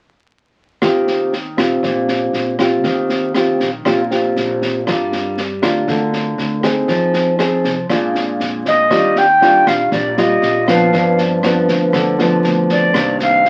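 Breezy and romantic, this bossa nova fragment, cut from a longer piece, moves in a straight 4/4 with the intimate glow of a very old 78 rpm record, vinyl crackle and all, under light reverb. A thumb-plucked nylon-string guitar with fresh strings sits up front from the start, its classical, warm tone carrying chords such as Eb69, Gm7 and Bb7. Beneath it, a pizzicato upright bass with steel strings stays woody and in the background. An open jazz drum kit in a small room adds kick drum, rim click and snare, dark and smooth, with a high-tuned snare, a boomy kick and a rolled-off top. At 8.7 s, just before the harmony shifts to Ebmaj9, a reedy silver concert flute takes the melody, airy and tongued with a straight tone and softened highs, placed up front for the final stretch through G7 and Cm9.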